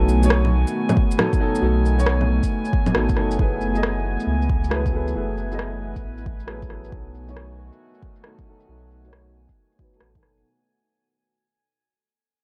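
A clear, woody upright piano under a filter sweep opens this nocturnal, rainy future garage fragment alongside a warbly, nostalgic tape-like pad, a round sine sub bass and a faint drifting glass-harmonics texture, all moving between B7 and F#m11 over swung 16ths, while overdriven electronic shaker, rim click and bongos sit up front and an overdriven deep electronic kick joins at 1.0 s, the pumping piano, pad and bass fading out together through a light digital ambience.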